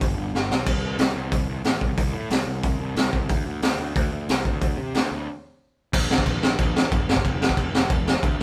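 A straight four-beat pulse sits in a half-time feel for the opening stretch, with a quick drum fill near the start and a break just before the second section arrives at 5.9 seconds. This short, rowdy punk rock cut from a longer piece feels upbeat, like a band playing live together in one small room with little reverb around them. The raw garage drum kit sits up front with a gritty, saturated character, pairing a high-tuned snare and a boomy kick with hi-hat and crash cymbal, its sound mid-forward and rolled off at the top. The fuzz-driven picked electric bass is just as forward, sounding bright and growly through its overdrive as it ranges from low F up to C. Both parts play from the first moment to the last, giving the brief passage a raw, unpolished drive.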